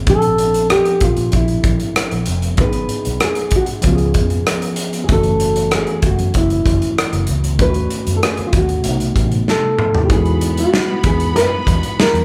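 A straight 4/4 groove at 96 BPM from an up-front modern studio drum kit with a punchy kick, medium-tuned snare and pumping room drives this smooth, cinematic slice of lush 1970s-style soul, where a round, foam-muted vintage electric bass and a clean tine electric piano heard through its built-in speakers support a dark, full-bodied nylon-string guitar melody with thumb-plucked tone and finger squeak, as chords move from A#maj9#11 through G#m7, C#7, F#m7, D#m7b5 and B7b9 before a drum fill at 9.5 s leads into Emaj9 at 10.1 s, where a distant, bright violin section adds an intense, vibrato-rich bowed second line, all set in light reverb like a band playing live in one room.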